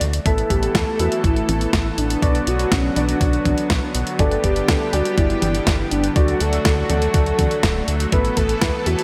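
Italo disco at 122 BPM in a straight 4/4, nostalgic and danceable, this short cut from a longer piece opens with a round, deep analog bass and a clean 12-bit digital drum machine of hi-hat, medium-tuned snare and toms, joined at 0.3 s by a thumpy electronic kick, a soft octave-layered synth lead with chorus, tremolo and delay, a lush, detuned unison pad, and short piano stabs with analog chorus. The harmony moves through Asus2, Bm, G and D, the dark, rounded lead carrying the melody over the thick, slow-blooming pad. A moderate hall reverb and bright 1980s-style digital production give the whole piece its glossy sheen.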